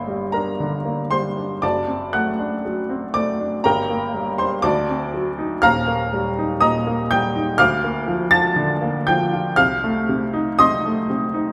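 A clear, woody upright piano opens alone in G minor, playing a brooding, stormy romantic character piece at 60 BPM in 2/4 with a free, rubato feel. Spanning Eb1 to A6, it moves from G minor through D7 harmonies to Eb, Bb/D and a closing Adim/C, sounding intimate and up front with audible action noise. A wet recital hall reverb surrounds the instrument in this passage cut from a longer piece, which runs to 11.5 seconds.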